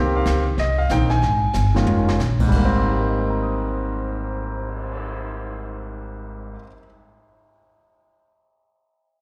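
A clear concert grand piano carries the melody with intimate, polished tone, audible action noise and a slapback echo, over a woody, growly pizzicato upright bass and a quieter brushed drum kit with a boomy kick that enters at 0.3 s and adds a fill at 1.5 s, in this sophisticated, relaxed jazz piano trio excerpt swinging at 186 BPM in Ab major, moving from Cm7 through Eb9sus4 to Abmaj9 at 2.5 s, and heard as a live gig through the venue's PA with recital hall reverb.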